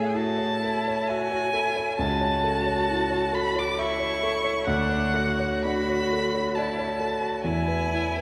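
A long, wet cathedral reverb fills this brief passage, cut from a longer piece: a slow, tender and lyrical romantic movement for piano trio in 3/4 at 59-68 BPM, played with rubato and tuned to A4 = 443 Hz. Up front, a rich solo violin sings the melody with expressive vibrato and portamento, while a bowed cello carries a soft-attacked, warm second line with its own vibrato and gliding slides. A dark, mellow grand piano, intimate and vintage in tone with its action noise audible, gives smooth accompaniment as the harmony moves from A through A/C# and Dmaj7 to E at 7.4 seconds.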